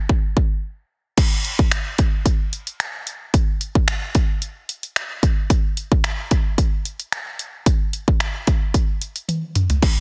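Pop drum excerpt at 111 BPM in a straight 4/4, with an energetic yet bittersweet mood. A single electronic, layered pop drum kit carries the whole clip from 0.1 seconds, sitting up front with a punchy kick, bright hi-hats, finger snaps, toms and crash cymbal, plus a touch of soft clipping on the snare. The groove opens briefly, drops into a break at 0.6 seconds, then moves into the second section from 1.2 seconds onward. A drum fill arrives at 9.3 seconds just before the clip ends. The sound is dry, with a dense, heavily limited modern master that keeps the produced kit forward.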